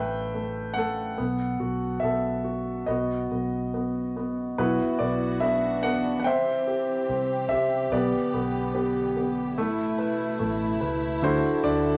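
The sound is close and intimate in a moderate large-studio reverb, framing this excerpt of a heartbroken acoustic folk-pop ballad at 72 BPM in 4/4, where a woody upright piano with audible action noise carries the melody up front over a dark, foam-muted electric bass, joined at 4.6 seconds by a mellow French horn second line with light vibrato and a gut-string chamber section holding reedy sustained chords through shifts from Bsus4 to C, G/B, Asus2 and Dadd9.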